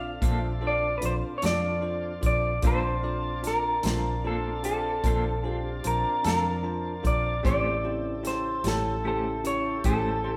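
An electric guitar through a small old amp carries the melody up front, its picked, slightly broken-up, lo-fi tone bathed in spring reverb. This soulful, smoky slow blues moves at 50 BPM in 12/8 with a straight feel, cut from a longer piece. A dark, round, foam-muted fingered bass sits up front beneath a bell-like, bright tine electric piano and a smooth tonewheel organ holding sustained chords, its key click and vibrato turning through a slow rotary speaker. A clean, hollow-body semi-hollow guitar adds fingered accompaniment with tremolo, joining at 0.2 s alongside a natural, airy country drum kit whose punchy kick, medium-tuned snare and hi-hat play until 10.0 s. The harmony rests on Bbmaj7 before shifting to A7#9 at 7.4 s, and the whole band sounds as if playing live together in a moderate stone room.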